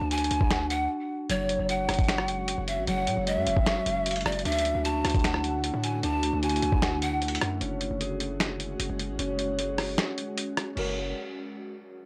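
A muffled, pitched-down sampler-style drum kit sits up front in this melancholic, menacing trap cut from a longer piece, with a thumpy kick, snaps, rim clicks and hi-hat at 152 BPM in a half-time feel, in F# minor and tuned to A4 = 444 Hz, its kick falling away from 10.0 to 10.8 seconds. A bright, thumb-plucked concert harp plays ringing arpeggios through a low-pass filter and analog delay, while a breathy bamboo pan flute with vibrato and chiff carries a second line until 7.2 seconds and a punchy, heavy 808 bass anchors the low end. From 2.3 seconds an ethereal, detuned pad adds slow-attack chords over F#sus2, Dadd9 and F#, with chorus and reverb of its own, all captured as a dry, gritty cassette-tape recording.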